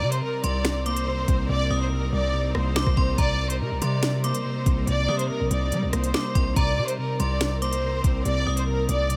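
Over a half-time drill groove at 142 BPM in C minor, a knocking, up-front electronic kit of kick, sharp snare, crisp hi-hats, rim clicks and finger snaps (hats dropping out from 1.5 to 3.2 seconds) drives a punchy, saturated 808-style bass beneath a lush, warm violin section melody with tape echo, a ringing, inharmonic FM bell line with chorus, dark felt-muted synth keys through chorus and phaser, and biting symphonic strings holding a Cm7 chord in the background, all within light digital reverb for a menacing, cold excerpt cut from a longer piece.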